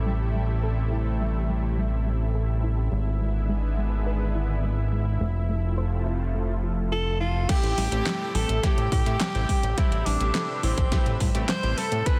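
A breathy tenor saxophone carries the melody from 6.9 seconds, up front and intimate, with vibrato, scooped notes and a digital delay trailing its jazz-style solo line. Underneath, this nostalgic, cinematic synthwave excerpt in A minor moves at 105 BPM in a straight 4/4, opening on a silky, string-like analog pad with ensemble chorus and sidechain pumping, a fat, detuned sawtooth bass sitting up front, and a soft, round pluck playing arpeggios through chorus and tape echo in the background. The chords move from Am7 to E7/G# and Fmaj7 before returning to Am7 at 7.5 seconds, where the arrangement fills out. There a punchy electronic kick and a pop kit with a fat snare, metallic hats, handclaps and crash cymbal arrive in studio reverb, alongside glossy, retro polysynth stabs with tape echo and a very quiet, airy lead playing a second line with portamento. The sound is dense and heavily limited in a modern master with light reverb.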